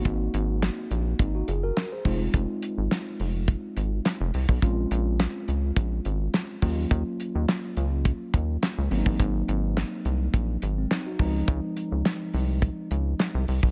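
A straight 4/4 groove from a damped, dry 70s drum kit, with a fat snare, tight kick, hi-hat and handclaps, drives this slick, funky slice of early-eighties boogie funk, cut from a longer piece. Up front with the drums, a rubbery, hollow square-wave bass with a filter pluck and fast attack bounces through the low register. A mellow, clean tine electric piano supplies the accompaniment over chords moving from Ab7 through Fm7, Bbm9 and Ebm9, back to Ab7 and on to Dbmaj9, all in a small room ambience where the drums sound dark and rolled off on top.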